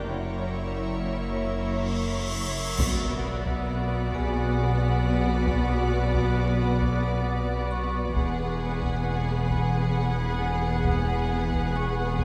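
A muted, veiled string section of violins, violas, cellos and double basses opens with an organ-like pad given ensemble chorus, a deep sine sub-bass drone and a bright, ringing vibraphone in this mysterious, eerie suspense film score cue in 3/4 at 67 BPM in B dorian, where a huge, dark cymbal swell from 1.7 s breaks into an impact at 2.8 s as very quiet taiko drums enter under chords moving from F#7 through Bm to Eadd9, all set in a wet scoring-stage reverb.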